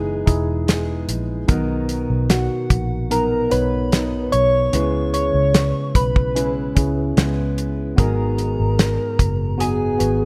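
A straight 4/4 pulse at 74 BPM from a damped, dry 70s drum kit with a tight kick and rolled-off top, entering at 0.3 s, carries this heartfelt, emotional pop ballad excerpt in B major, where a round, foam-muted fingered electric bass sits up front beneath a barky, clean tine electric piano, a full-bodied fingerpicked steel-string acoustic guitar plays delayed arpeggios, and a gentle, detuned FM synth lead with a fast attack and chorus carries the melody over chords moving from Emaj7 through Bmaj7 and C#m7 to G#m7 in a small room.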